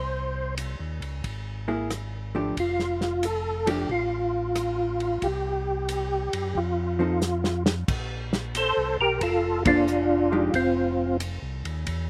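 A swung 4/4 groove at 90 BPM drives this soulful soul jazz organ trio excerpt, with a dark, smooth drum kit entering at 0.6 seconds, its punchy kick, medium-tuned snare, rim click, hi-hat, ride and crash sounding like a small room, and a fill leading the move from F major into Bb major at 7.9 seconds. A round, mellow organ with third-harmonic percussion, slow rotary speaker, chorus vibrato and slapback echo carries the up-front melody, while a second clean organ with key click and chorus vibrato holds down the low bass line. From 1.7 seconds a compressed, picked hollow-body electric jazz guitar adds close, shadowy accompaniment, and a brief band accent punctuates the later section over a dry, roomless sound.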